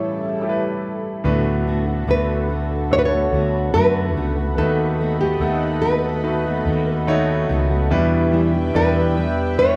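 A heartfelt, emotional pop excerpt at 72 BPM in D major, where a dark, deep-toned nylon-string guitar carries the melody over a clear, smooth concert grand piano and a shimmering, retro chorused pulse-width pad that holds sustained chords with a slow attack. At 1.2 seconds a growly, amped fretless electric bass comes up front alongside a fingerpicked steel-string dreadnought playing arpeggios in the background, as the chords move from A7 through D6, B7/D# and Em7. The parts sound like a band playing live together in one room, bathed in a lush large studio reverb.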